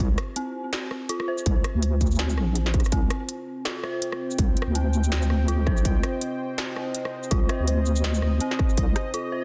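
A deep, soft wobble bass sits up front in this tense, heavy half-time drum and bass excerpt at 164 BPM in C minor, its detuned square and sine tones given a chorused, compressed weight as it holds the low end on a C minor chord. A distorted electronic kick punches alongside it, while an industrial drum kit adds a clanging snare, smooth hats, rim clicks and shaker with a 16th-note swing that keeps the half-time groove loping. Above them, a dark detuned synth bell spins eerie, inharmonic FM arpeggios that warble and decay into long tails of delay and chorus. At 4.0 seconds a dark analog pad enters with moody, full-bodied sustained chords, its slow attack and sidechain pumping giving it a breathing motion. The mix carries a digital ambience and a dense, heavily limited modern master, with the bell sounding through until 9.4 seconds.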